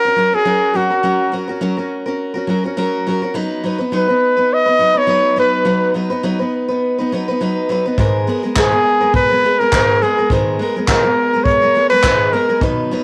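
A clear, punchy trumpet with light vibrato sings an easy-going, carefree melody over a bright, full-bodied picked steel-string guitar with a cassette-tape tint in this acoustic pop piece at 104 BPM with a gentle 16th-note swing, moving from F# to B/F# before a distant, roomy brush drum kit with a boomy kick and handclaps joins at 8.0 seconds on G#madd9, all in a homespun cassette recording bathed in moderate spring reverb and tuned to A4 = 443 Hz.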